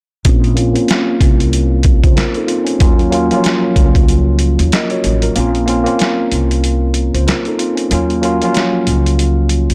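Thumpy, pitched-down sampler-style boom-bap drums sit up front in this gritty, reflective hip hop cut at 94 BPM with a swung 16th feel. A worn, slightly out-of-tune tine electric piano with cassette-tape colour and a filter sweep from 0.3 to 5.4 seconds moves between Bbmadd9 and Ebm7, while a woody, growly pizzicato upright bass anchors the low end. The kick drops out from 4.1 seconds before a break at 5.4 seconds, all in a blown-out, overdriven mix with light reverb.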